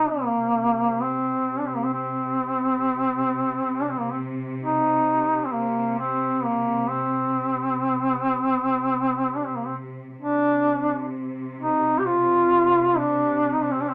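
A moderate, club-sized reverb frames this short fragment of a mournful, solemn Caucasian folk lament, which unfolds in a free, rubato triple metre. A mellow duduk carries the solo melody up front, its vibrato and scooped notes giving it a roomy folk voice. Beneath it, a dark, veiled string section plays con sordino, holding a lush, soft-attacked bowed drone on C3 for the full 13.9 seconds as the music moves into a new section at 10.2 seconds.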